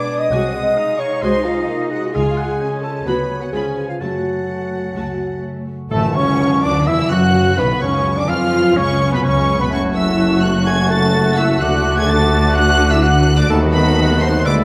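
A straight, fast 4/4 pulse at 127 BPM drives this urgent, restless excerpt of a dramatic romantic orchestral movement in F# minor, where lush, vibrato-laden violins carry the high melody over a second violin line, an airy flute, a distant oboe, a clarinet and a mellow bassoon, while dark, soft-attack French horns hold sustained chords, a ringing harp plays arpeggios, very quiet rich violas accompany, and expressive cellos with focused double basses anchor the bass, until at 5.9 s a tuba joins the low end and a bright tam-tam sounds with an ensemble accent, set in a wet recital-hall reverb.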